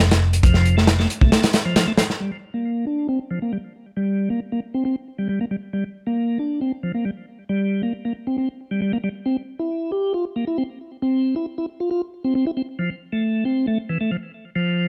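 A small, lightly reverberant room frames this energetic, gritty breakbeat cut at 136 BPM in G dorian, where a piping, scooped tonewheel organ riff sits up front, lightly overdriven through a slow rotary speaker with tube saturation, vintage 12-bit sampler grit, a low-pass filter and delay. A dark, round hollow-body bass played with a pick and a crunchy, saturated drum kit with a tight kick, medium-tuned snare, hi-hat and rolled-off top open the piece, the bass stopping at 1.3 s and the drums at 2.2 s. From there the organ carries on alone as the harmony moves from G minor to Csus4 and back to F.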